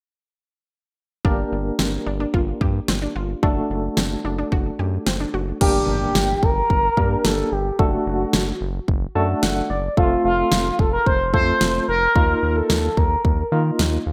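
Bright 1980s-style digital production with a moderate plate reverb frames this nocturnal, cool synth-pop piece, cut from a longer work. From 1.2 s, a punchy, fat-snared pop drum kit with gated reverb sits up front over a round analog bass, a barky tine electric piano with fast tremolo and a detuned analog pluck playing arpeggios with chorus and delay until 5.6 s. From that point, a smooth, expressive synth lead with vibrato carries the melody while a very quiet electronic impact sounds and the electric piano adds a fill as the harmony moves from Gm through D/F# and F to Ebsus2.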